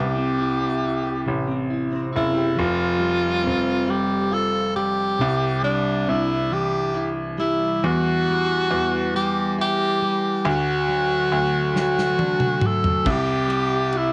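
A romantic, tender pop ballad in 6/8 at 46 BPM, this short excerpt from a longer piece has the intimate feel of a home recording on cassette, with light reverb and a small room ambience. A breathy tenor saxophone carries the melody from D4 to A4 up front, its clear, jazz-style subtone coloured by vibrato and scooped notes, with a cassette tape character. Beneath it, a double-tracked, direct-recorded clean electric guitar plays picked, compressed accompaniment, also with a cassette tape tint, while a bright grand piano with brilliant, short-sustain notes holds down the bass between F1 and E2. The harmony moves through C, Fsus2, Cadd9, Em and D before returning to C at 13.1 seconds. A modern studio drum kit, airy and polished with a medium-tuned snare and tight kick, enters at 11.8 seconds with a fill across kick, snare, toms and cymbals that leads into the final section.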